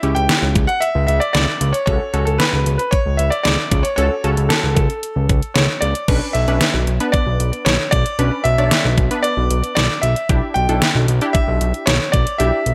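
This nocturnal, driving synth-pop excerpt opens with everything at once: a clear, present baby grand piano carries the melody through delay, over a punchy, detuned polysynth comp with ring-modulated, wave-folded tones, filter sweeps and chorus. Underneath, a fat, nasal, saturated analog bass sits up front beside an overdriven pop kit with a knocking kick, deep snare, hi-hat and crash, the kit washed in gated reverb. Around 6.1 seconds the harmony moves from diminished and minor shadings onto Bmadd9, then settles onto Em7/B at 10.3 seconds within a light digital ambience.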